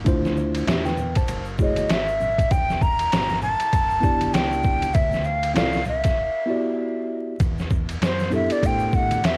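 This smoky, mellow jazz-hop cut opens with a worn, slightly out-of-tune tine electric piano, clean and up front under plate reverb, laying down Dm9, F#m9 and Em9 chords over a deep, round dub bass with dark tube saturation. A gritty, pitched-down sampler-style drum kit, compressed and re-recorded in a small room, sits in the foreground with a thumpy kick, medium-tuned snare, hi-hat and ride, its cassette grain adding to the lo-fi haze. Soft-handed congas and egg shaker stay in the background at a relaxed 98 BPM with a lazy 16th-note swing. At 1.6 seconds a breathy silver concert flute enters close-miked and up front, its straight, tongued tone slightly unsteady and trailed by analog delay and tape wear. After a break at 6.2 seconds, the flute takes a short solo from 7.4 seconds over an Em11 chord, all wrapped in light reverb and vinyl crackle, like a home cassette recording lifted from a longer piece.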